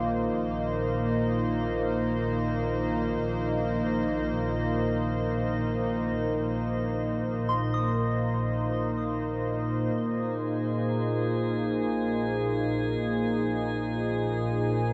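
A smooth sawtooth pad sits up front with sustained chords over a Cm(add9)/Bb harmony, while a soft, pure FM bell traces gentle arpeggios high above and a nasal, evolving analog drone hums in the background of this luminous, free-time ambient fragment. A glassy texture of drifting overtones floats through the middle, and a dark, intimate bowed double bass section plays sul tasto with light vibrato. The bell stops at 10.0 seconds as the harmony settles on Bb5 and the bass fades in, all within a dark, warm production bathed in a huge, wet reverb.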